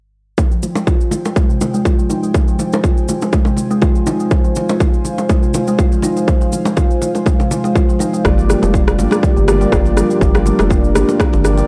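A dry, gritty recording with transformer saturation, a faint mains hum and light reverb opens on this warm, driving afro house cut from a longer piece, moving at 122 BPM in 4/4 with a 54% swing on the sixteenths in F dorian. From 0.4 seconds a punchy, overdriven electronic kick sits up front, layered and re-recorded in a large room, joined by a tape-warm electronic shaker and rim click and round, low-tuned bongos played with hard hands in the background. A smooth analog pad of sawtooth and triangle with a sub octave holds sustained chords over Fm, its slow attack and long release softened by chorus, sidechain pumping and a filter sweep. Woody kalimba arpeggios, plucked with the fingertip and ringing, run through a low-pass filter sweep, analog delay and the same pumping. At 8.2 seconds the harmony shifts to Gm7 as dark, detuned synth brass stabs arrive with chorus, vibrato and delay, alongside a deep, wave-folded analog bass up front and bright, high-tuned congas that are barely audible in the distance.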